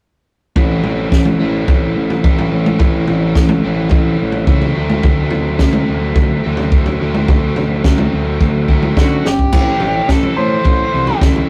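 A straight 4/4 pulse at 107 BPM drives this restless, cool indie rock excerpt in A dorian, with a compact, dry cocktail drum kit up front, its punchy kick, high-tuned snare, toms and dark crash cymbals playing from 0.6 seconds alongside a biting overdriven guitar riff and a growling picked electric bass, all moving from Am to D7. A drum fill at 8.4 seconds, joined at 9.0 seconds by an octave-fuzz lead guitar with a dark, distorted melody placed up front, leads into a second section on Am7. The rough rehearsal-room recording carries light reverb and tube saturation, and the piece is cut from a longer work.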